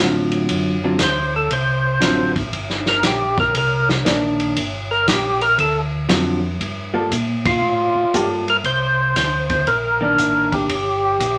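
A fat, lightly overdriven percussive tonewheel organ carries the melody from 1.0 s and solos through the first 6.6 seconds of this soulful, smoky soul jazz organ trio excerpt in G minor at a swinging 118 BPM, with a round, mellow tonewheel organ bass turning through a slow rotary speaker, a clean, compressed hollow-body jazz guitar comping, and an up-front vintage drum kit with a punchy kick, ride, hi-hat and snare, all in a moderate club reverb, with a band accent at 7.4 s.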